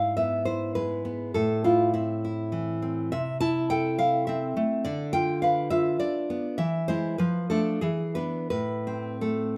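A lone nylon-string guitar opens on an E chord over G#, fingerpicked up front with a full-bodied, deep classical tone, in a short passage cut from a longer romantic piece. Moving freely in rubato triple time, it turns passionate and melancholic as the harmony travels from A minor through a diminished chord and a dominant seventh before settling back on A minor at 8.5 seconds. A moderate recital-hall reverb surrounds the instrument across its 9.6 seconds.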